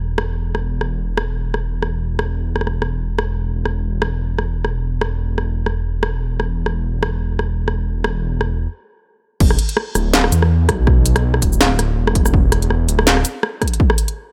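A half-time groove at 164 BPM in 4/4 carries this excerpt of half-time drum and bass, its sixteenths swung at 56%, and the mood is spacious and cinematic. An industrial drum kit with a clanging snare, crisp hats, rim click, shaker and crash cymbal sits up front from the opening moments, electronic and produced. Underneath, a dark detuned saw bass spans D1 to E2, deep and rumbling with a beating, sawtooth edge blended with square and sine tones, a fast attack and sustained, mellow notes placed close in the mix. After a brief stop, the drop lands at 9.4 seconds, bringing in a heavy electronic kick drum that pushes forward as the loudest part. The dry room, with little reverb, keeps every hit and bass note close and direct.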